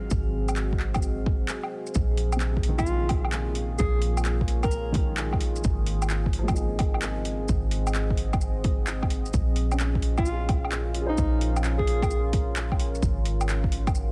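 Swung hi-hats, shaker, handclaps and woodblock from an overdriven deep house kit ride over a deep, overdriven electronic kick in this wistful, nocturnal future garage excerpt, with a round, soft 808-style bass pumping beneath. A moody sawtooth pad with chorus and a boxy, woody upright piano tucked in the background both breathe with sidechain pumping, the piano also trailing analog delay, while a very quiet glassy texture of drifting overtones hangs only through the first 2.0 seconds. A mellow, jazz-style alto saxophone with vibrato and analog delay sings two short phrases, at 2.8 and 10.2 seconds, over a dense, heavily limited master with a cassette-tape colour.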